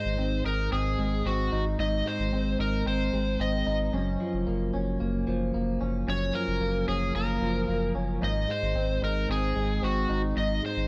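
Lightly reverberant and blissful, this ethereal dream pop excerpt sets a bright, overdriven slide guitar melody played with fingerpicks, with digital delay, over twangy, compressed clean electric guitar arpeggios colored by lush chorus and delay and a deep, thick saturated sub bass, all up front as the harmony moves from Ab to Gbmaj7 at 3.9 seconds and back to Ab at 8.2 seconds.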